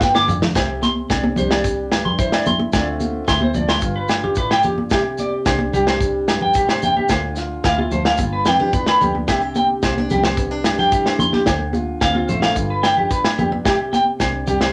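A wet small room surrounds this joyful, danceable highlife guitar band at 110 BPM in C major, which opens on a short drum fill as a clean electric guitar, up front, spins high arpeggios over a dark, fingerpicked steel-string acoustic guitar with audible finger squeak. A round, foam-muted fingered electric bass and a dry soul drum kit with a tight kick and medium-tuned snare carry the groove, while close, high-tuned congas struck with hard hands, ringing agogo bells and grainy, compressed maracas set in the background fill out the percussion. The harmony cycles through Csus2, Dm7 and G7 for the whole passage.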